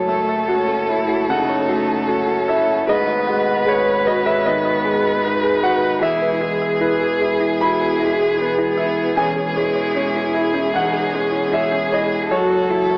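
This excerpt has the hazy sound of a home cassette recording heard over AM radio, set in a moderate spring reverb. It is reflective, fragile neoclassical music for piano and strings at 76 BPM in 4/4, played with a rubato feel in F# dorian, and its chords move from F#m7 through G#m7, E and C#m/E before returning to F#m7. A bowed solo violin, rich and focused with vibrato, carries the melody up front yet sounds distant, while a single bowed cello, also with vibrato, traces a second line in the background, both touched by tape echo. A clear, natural concert grand piano with deep bass sits forward as accompaniment, and a smooth, even bowed double bass with vibrato holds the low end. From 0.1 seconds a round, tine-like FM synth pluck, warbling with chorus and tape echo, plays arpeggios in the background, and from 0.3 seconds a moody, detuned ambient pad with a slow attack sustains very soft chords beneath the ensemble.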